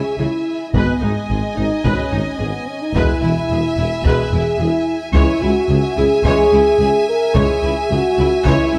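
The passage opens at once on a mellow French horn section holding sustained chords up front, over a soft-attacked tuba bass and two chamber violin lines, one carrying a high melody on G#5 and the other a second line with a focused, smooth top. This is a dramatic, heroic cinematic film score in C# minor at 109 BPM in a straight 4/4, moving from C#m through G#m and E before returning to C#m at 5.1 seconds. Within the first moments, a clear, intense viola section adds accompaniment, while a lush cello section and a double bass section with vibrato deepen the bass from the background. At 0.7 seconds, a bright, tight trombone section joins with sustained chords, and a taiko ensemble enters, its heavy sticks giving the drums an acoustic, small-room punch. Light reverb and close, detailed microphones keep the orchestra present in this brief cut from a longer piece.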